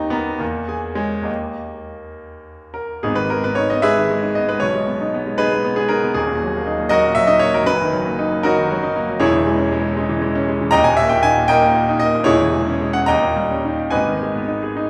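Unfolding in a rubato 6/8 at roughly 66-81 BPM counted in dotted quarters, this romantic character piece for solo piano sets a stormy, passionate mood in G# minor. A bright grand piano carries everything alone from 0.0 to 14.9 seconds, its brilliant, natural tone placed up front and ranging from a deep D#1 to a ringing A#5. A short opening passage hovers between C#m/E and D# before a longer second section settles onto G#m at 3.0 seconds. From there the harmony moves through G#m/B, D#m and D#m/F#, returns to C#m/E and D#, touches C#m/E once more, and tightens through D#7 before resolving to G#m at 13.9 seconds. A wet recital hall reverb with a 1.6-second decay surrounds the instrument with the resonance of a church or concert hall, and the fragment is cut from a longer piece.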